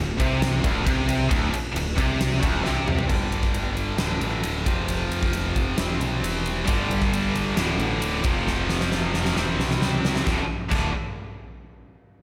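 This swaggering, energetic hard rock excerpt opens with a heavy high-gain guitar riff, bright and double-tracked up front, alongside a scooped high-gain guitar sitting in the background and a growling picked electric bass, dark, round and overdriven. A huge arena drum kit enters at 0.2 seconds with a fat snare, punchy kick, toms, and bright crash and ride cymbals. The band drives along at 134 BPM in a straight 4/4, moving from a Csus2/D opening into a G5, D5, F5 and C/E progression that repeats before landing on D5. The scooped guitar drops out at 3.1 seconds and returns at 6.7, while drum fills mark the turns near 3 seconds and again from 8.5 to 10.3 seconds. Both guitars carry distortion and slapback echo, and a moderate scoring-stage reverb with studio ambience gives the whole mix a big arena sound.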